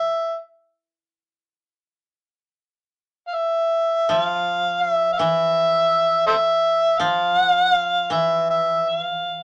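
This is Japanese traditional chamber music in free time, a short cut from a longer piece with a still, meditative mood and tuning set at A4 = 441 Hz. An amplified, overdriven harmonica carries the melody up front as a solo voice. Its gritty tone is shaded with light vibrato, scooped notes and tongue slaps in a jazz style, sounding briefly at the very start and returning at 3.3 seconds. The koto enters at 4.1 seconds as a quiet accompaniment in a low register, plucked with fingerpicks and sounding dry and woody. The harmonica sits well above it, ranging from A4 to F5, while the koto stays between E3 and F3. A moderate small-room ambience gives the pair a close, intimate setting.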